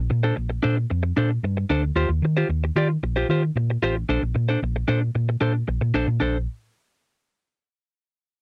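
Disco in B-flat major at 113 BPM with a straight 4/4 feel, this short cut from a longer piece sounds joyful and celebratory. A hollow-body short-scale electric bass, played with the fingers, opens at 0.0 s with a round, dark, amped tone sitting up front in the mix. Close behind it comes an electric guitar at the edge of break-up, picked and compressed, its slightly gritty voice placed up front as accompaniment in a higher register. The harmony moves from Bbmaj9 to Eb69 and back to Bbmaj9, giving the groove a lush, jazzy colour. The dry, close 1970s-style studio sound keeps both instruments intimate. Both parts stop around 6.5 s, shortly after a new section begins at 6.2 s.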